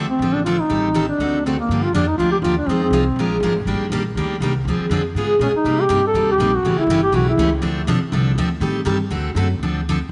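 Bathed in a moderate plate reverb with a softened top end, this fiery, virtuosic excerpt of jazz manouche swings at 242 BPM in G minor: a bright, full-bodied picked steel-string acoustic guitar with audible finger squeak and a woody, thumpy gut-string upright bass played pizzicato carry the accompaniment, while an up-front, mellow duduk sings scooped, folk-style phrases from 0.1 s and again from 5.4 s over changes that run from Dm7 through Gm7 and Ebmaj7 to C#7 and A7.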